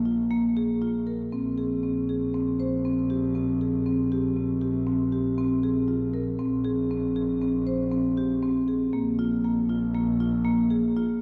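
This is contemporary instrumental chamber music in 5/4, moving at 118 BPM with a straight feel and a restless, playful mood, cut from a longer piece. A marimba played with medium mallets sits up front, spinning arpeggios between Bb3 and C5 with a warm tone from 0.1 seconds onward. Beneath it, a single bowed double bass holds a low Bb1, its sound clear and focused with a smooth top and vibrato, though it rests lower in the balance than the marimba. The harmony moves from a Bb5 chord to a rootless Fm over Bb at 1.3 seconds, then settles back on Bb5 at 8.9 seconds. A long, wet church reverb surrounds the players, giving the brief passage the spacious air of a church or concert hall.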